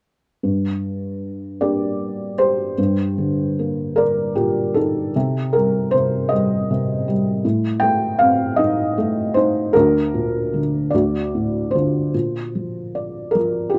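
Dark and wistful, this short classical piece for solo piano drifts in G minor at a slow 51 beats per minute in 6/8, its rubato feel letting the pulse breathe freely. A felt-muted upright piano carries everything alone from 0.4 to 13.8 seconds, ranging from D2 up to G5. Its tone is soft and mellow, the thick felt giving each note a short sustain, and it sits up front with an intimate closeness. After a brief opening passage, a longer second section unfolds from 2.8 seconds, moving from G minor through C minor, A diminished and B-flat over D before reaching D major and settling on B-flat. Light reverb surrounds the instrument, and the recording is cut from a longer piece.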